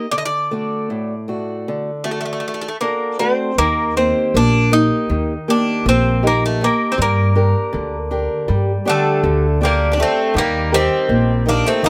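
Greek folk in 9/8 at 159 BPM, melancholic and reflective and gradually speeding up, with a bright, metallic bouzouki carrying the melody up front over a boxy, woody old ladder-braced guitar, a dark pizzicato upright bass entering at 3.6 seconds as the harmony moves from D through Eb and Gm, and a second bouzouki line joining at 8.9 seconds in light reverb, in this short cut from a longer piece.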